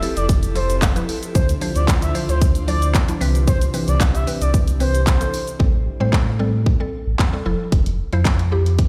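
Confident and driving, this dance-pop excerpt moves at 113 BPM in a straight 4/4 in A minor, cut from a longer piece. A punchy, layered electronic pop kit sits up front with kick, handclaps, hi-hat and shaker, while a deep, full sine sub bass with an added octave pumps against the kick from 0.2 seconds to the end. A woody, round FM mallet pluck carries the accompaniment through chorus and phaser, joined by an airy, breathy pad of detuned sawtooth and triangle tones that holds slow-blooming chords with a moving notch until 5.6 seconds, both also pumping with the kick. Over them, a smooth, expressive portamento lead sings a narrow melody with vibrato, chorus and dub echo, and a grainy, very quiet tube shaker adds close, dry texture until 5.6 seconds. The harmony moves from Fmaj7 through Dm7 and Cmaj7, then shifts at 5.6 seconds into a second section on Am7 and Fmaj7, the whole mix sounding as if played on a big sound system in a bare room with large studio reverb.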